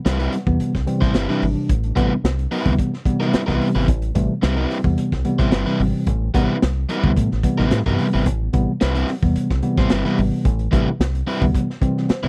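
Funk in A minor at 110 BPM, this sly twelve-second cut from a longer piece sits on a single Am9 chord, with a gritty, saturated breakbeat kit of hi-hat, tight kick and medium-tuned snare up front, a round, punchy fingered electric bass holding the low end, a crunchy overdriven picked guitar comping alongside, and mellow tine electric piano stabs trailed by tape echo that break into a fill at 11.8 seconds, all captured in a dry, close 1970s-style studio sound.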